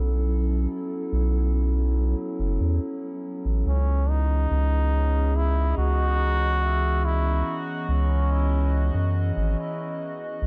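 A straight 4/4 pulse at 71 BPM carries this meditative, spacious ambient dub excerpt in C# minor, where a warbling, nostalgic, lo-fi tape-like pad holds dark sustained chords with chorus and its own reverb, a deep analog bass sits up front beneath it, and at 3.7 s, as the harmony shifts from B9sus4 to C#m9, a nasal, straight-muted trombone enters with a brief classical-style solo melody trailed by dub echo until 9.1 s, set within a light room reverb.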